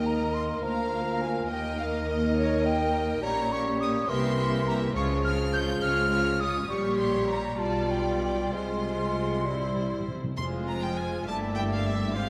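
A wet, reverberant scoring-stage sound surrounds this urgent, dramatic classical-period orchestral movement in a rubato 6/8, cut from a longer piece. A close, clear chamber violin section carries the bowed melody with smooth vibrato, while a rich second violin section, an airy, hollow concert flute and a clarinet in the background weave second lines over lush, distant violas, a mellow, roomy bassoon and a dark French horn section holding sustained chords. Focused cellos and double basses anchor the bass, and timpani with medium mallets on calf heads play a fill from 9.5 s, shortly before the bassoon stops at 10.1 s.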